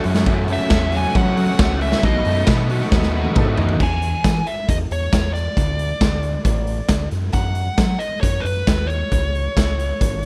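Indie rock at 135 BPM in E major, wistful yet upbeat, opening with two picked rhythm guitar riffs, one crunchy and bright with ensemble chorus and slapback echo and the other a warm overdriven tone, which both stop at 3.8 s after a drum fill from 2.9 s. A raw garage kit sits up front with a punchy kick, medium-tuned snare, hi-hat, toms and crash in a gritty, pumping stone room with a rolled-off top, while a growling fingered bass adds its own overdriven bite. From 0.5 s a nasal lead guitar with a parked wah carries the melody through overdrive and slapback echo over a dry mix, as the chords move from F#m7 and B7 to E, D5, D#m7 and C#5.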